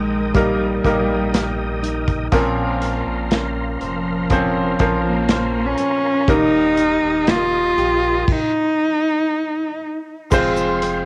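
A dark, boxy bowed cello with vibrato and analog delay sings a longing, melancholic melody up front over brilliant grand piano, faint fingerpicked steel-string acoustic guitar arpeggios, clear tonewheel organ chords with chorus vibrato, key click and fast rotary speaker, a deep sine-like sub bass with octave, and a punchy, rolled-off acoustic drum kit in this cassette-textured, dry home-recorded pop ballad fragment, where the chords break off at 8.3 seconds, the cello stops at 9.8 seconds and a grainy egg shaker briefly appears at 10.3 seconds.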